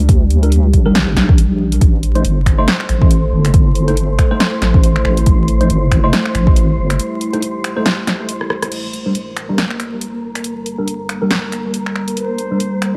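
Under light reverb, vinyl crackle and a faint mains hum, this cavernous, heavy excerpt of deep dubstep rolls in a swung half-time feel. A punchy snare, finger snaps, hi-hat, rim click and crash from an up-front drum kit ride over a deep electronic kick, while a dark, compressed wobble bass throbs beneath a moody, detuned ambient pad. A worn, slightly out-of-tune tine electric piano adds overdriven stabs through phaser and dub echo, and a breathy wind-like noise texture drifts in at 2.3 seconds. The kick drops away at 6.5 seconds and the bass at 7.0 seconds, leaving a break that gives way to a filter sweep on the pad, before a distant, hollow bamboo shakuhachi calls out a brief echoing note at 12.2 seconds.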